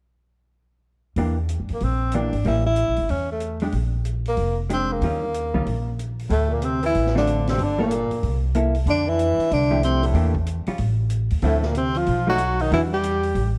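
Late-night and smoky, this brisk small-group swing and bop passage in D minor runs at 187 BPM, opening at 1.2 seconds with a clean, compressed hollow-body electric guitar in accompaniment, a woody, thumpy upright bass played pizzicato and up front, and a vintage drum kit with a punchy kick and rolled-off top. A breathy tenor saxophone with light vibrato and a soft attack takes the melody up front from 1.7 seconds, and a warm baritone saxophone adds a second line from 6.3 seconds as the second section begins. Light reverb and a dark, warm production round out the group's sound.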